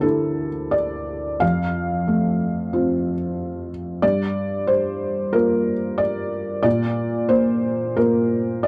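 A felt-muted upright piano plays alone through this short, intimate fragment of neoclassical minimalist music, its soft, mellow tone sitting up front with the natural click of its action clearly audible. The playing is rubato and reflective, moving through Dsus2, F, Gm7 and Bb across a range from D2 to F5, ending at 8.7 seconds. A close, dry 1970s-style studio sound with a touch of light reverb keeps the piano feeling near and private.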